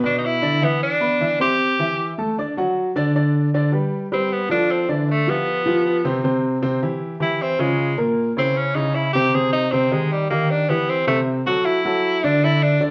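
Heard from further back in a wet studio room, this lively, sophisticated jazz piece is cut from a longer performance. A warm, natural baby grand piano with a short sustain sits up front in accompaniment, moving through changes such as Bmadd11, Am7, Eb13b9 and C(#9). A bright, punchy tenor saxophone with a vintage tone, vibrato and a touch of plate reverb carries the melody from 0.1 seconds and takes a forceful, up-front solo from 3.2 seconds to the end.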